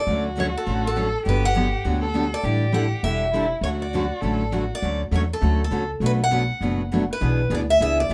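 A brisk swing at 201 BPM in 4/4, with the eighths lightly swung, drives this lively, charming stretch of jazz manouche in D major, cut from a longer piece and tuned a touch below standard pitch. A brilliant, boxy parlour-style steel-string guitar carries the melody up front, its fresh strings picked crisply with audible finger squeak. Beneath it, a full-bodied jumbo guitar and a second, more brilliant concert guitar set further back supply the accompaniment, while a woody pizzicato upright bass sits up front, anchoring the low end. A single bowed violin adds a warm, expressive second line with vibrato, soft attacks and portamento, dropping out at 4.8 s as the phrase repeats. The harmony moves from Dmaj7 through Gmaj9 and A7sus4, later turning to Bm7 and E7/B, all in a moderate studio room.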